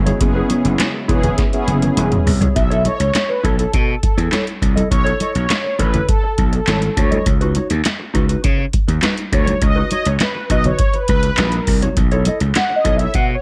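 A straight 4/4 groove at 102 BPM drives this smooth, feel-good stretch of early-eighties boogie funk. An electro analog drum machine lays down a deep kick, punchy gated snare, handclaps, metallic hats and toms, joined by bright, thin-skinned congas in the background and a growly, overdriven slap bass up front. A thick, detuned unison pad holds chords very quietly until 2.5 seconds; after a drum fill from 1.4 seconds, an analog polysynth solo takes over at 2.6 seconds above round, brassy synth chords treated with chorus and phaser and a dark, clean electric guitar riff with lush chorus, all set in light reverb and moving through suspended ninth chords on F#, B and C#.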